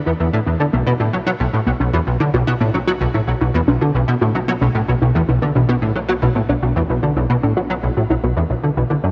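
Ambient, sequencer-driven space music at 112 BPM in a cosmic, mysterious mood, where a punchy, funky plucky analog bass riff sits up front with ensemble chorus and tape echo from 0.1 seconds, while a lush, detuned unison pluck spins arpeggios in the background through tape echo, shimmer reverb and a filter sweep, and a very quiet, evolving analog drone with pulse-width modulation holds the low end, all settling into a lush hall over chords moving from E7(no3) to Bm7 in this short cut from a longer piece.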